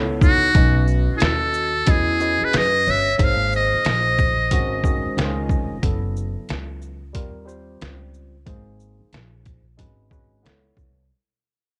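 Jazz-hop at 91 BPM with a cool, nocturnal mood, this fading fragment sets a gritty, pitched-down sampler-style drum kit with a thumpy kick and cassette-tape grit up front over woody pizzicato upright bass and a worn, slightly out-of-tune tine electric piano with subtle chorus, while a buzzy metal-muted trumpet with analog delay carries the melody and a soft-mallet vibraphone rings quietly beneath it from 0.2 to 5.5 seconds, all in a light reverb with a home-cassette feel over chords moving from C#m11 through F#m7 to Aadd9.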